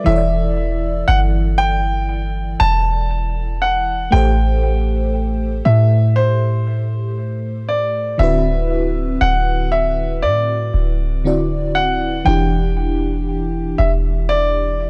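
A lazy 16th-note swing in 4/4 sets an unhurried, sensual late-night R&B groove for this short fragment of a longer piece. Up front, a baby grand piano carries the melody in its upper register, its warm, intimate, natural tone carrying audible action noise and trailed by an analog delay. Beneath it, an FM electric piano layered with a soft pad fills out the accompaniment, lush and dreamy with detuned shimmer, chorus and tremolo. A clean 808-style bass enters at 0.1 s, deep and boomy with a dark, sine-like weight that decays after each fast attack. The harmony moves from Em11 through Am7 and D13 before settling on Em7 at 12.3 s. The whole recording sounds dry and gritty, with little reverb around the parts.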